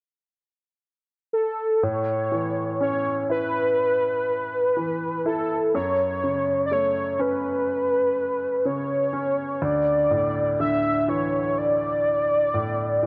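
A slow, straight 4/4 pulse at 62 BPM carries this heartfelt, emotional pop fragment in A major, cut from a longer piece and tuned to A4 = 441 Hz. A velvety synth lead enters at 1.3 s, carrying the melody between A4 and E5 with a smooth, full-bodied tone built from detuned sawtooth and triangle layers in unison, shaped by a filter sweep, a fast attack, sustained notes, vibrato and chorus. At 1.8 s a clear, polished baby grand piano joins as accompaniment, ranging from D2 to E4. The harmony moves from Aadd9 to F#m and then to Dsus2 across the short passage. Both parts sit up front in a light studio reverb, with the synth lead louder than the piano.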